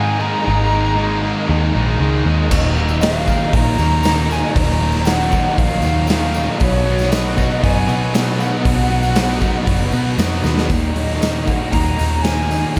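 Hazy and dreamy, this short cut from a longer shoegaze and dream pop rock piece moves at 117 BPM in Eb minor, with an airy, reedy concert flute carrying the melody through delay over a bed of guitars: a very quiet, twangy twelve-string playing arpeggios, a biting overdriven guitar with reverse reverb, a double-tracked distorted guitar that drops out at 10.7 seconds, and a dark, thick fuzz guitar with lush chorus, the last three sitting in the background above a round, foam-muted picked bass. A gritty, up-front garage drum kit with a punchy kick and pumping stone-room sound enters at 2.5 seconds, joined by a distant, jingly tambourine. The chords move from Absus2 through Ebmadd9 and B, and a drum fill at 10.5 seconds leads into Ebm. The whole mix is soaked in plate reverb and small-room ambience.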